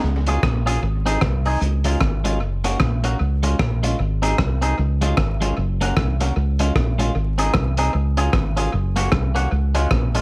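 Bouncy and joyful, this swung ska excerpt, cut from a longer piece, rides a short three-chord cycle that keeps turning over for its whole length. A fingered electric bass opens it alone at 0.0 seconds, round, punchy and dark, sitting low and up front. At 0.3 seconds a clean electric guitar and a breakbeat drum kit join in together. The guitar is picked, compressed and twangy, carrying tape echo and plate reverb, while the kit's hi-hat, punchy kick and rim clicks sound saturated and gritty with a rolled-off top and their own tape echo. Light reverb and a layer of vinyl crackle give the whole track a dusty, lived-in character.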